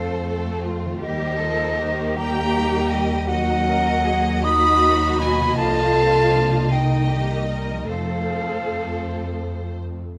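A 6/8 pulse, stretched and eased with rubato, carries this tender, uplifting cinematic cue, cut from a longer film score. A rich, focused violin section sings the melody with vibrato, while a pure, metallic concert flute, crisp in attack and heard at a distance, traces a second line alongside a softer, smooth-topped violin section set in the background. Underneath, warm violas with portamento supply accompaniment, a mellow, close-miked French horn section holds sustained chords, and a very quiet thumb-plucked concert harp rings out arpeggios. A dark, expressive cello section and a woody double bass section anchor the bass with lush bowing. The harmony moves from F through Eb, B/D# and Cm7 to F7, and a moderate concert hall reverb gives the orchestra a spacious glow.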